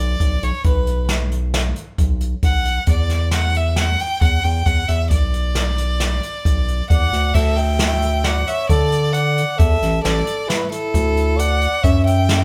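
Intricate and driving, this progressive instrumental excerpt moves at 134 BPM in an uneven 5/4 with a straight feel. A clear, nasal violin carries the melody up front with light vibrato and an airy bow, while a round analog bass, deep and dark with a fast attack and sustained tone, holds down the low end. A jazz drum kit played with brushes enters at 0.2 seconds, its dark cymbals, medium-tuned snare and boomy kick sounding natural and up front. At 6.9 seconds a breathy, mellow flugelhorn joins as a second line, with vibrato and scooped notes in a close-miked jazz style. The band plays live in one room with moderate large studio reverb and a faint mains hum, and the harmony moves from B5 through Esus2 and Bm to Dsus2 before arriving on F#7(no3).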